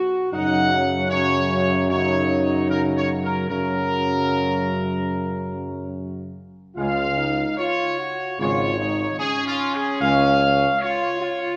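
In a straight, unhurried 4/4, this solemn, majestic classical brass fragment opens with roomy French horns sustaining chords, joined at 0.3 s by a soft-attacked, vintage-toned trumpet section carrying the melody up front. A clear trombone section holds chords in the background and a distant tuba with light vibrato supplies a warm bass line, while the harmony shifts from Gb to Db at 6.8 s. The trombones drop out at 10.3 s, and the whole passage is bathed in a wet concert-hall reverb.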